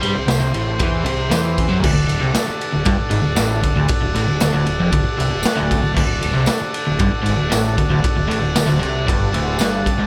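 A straight, driving 4/4 beat from a raw garage drum kit, with boomy kick, dark cymbals and a gritty, saturated small-room sound, pushes this swaggering garage rock excerpt. A crunchy, bright, double-tracked guitar riff sits up front beside the drums, while a growling overdriven bass and a jingly tambourine fill out the low end and the top. A vintage, buzzy combo organ holds clean sustained chords with light vibrato, breaking into short fills at 4.9 s and 9.1 s over a light studio reverb.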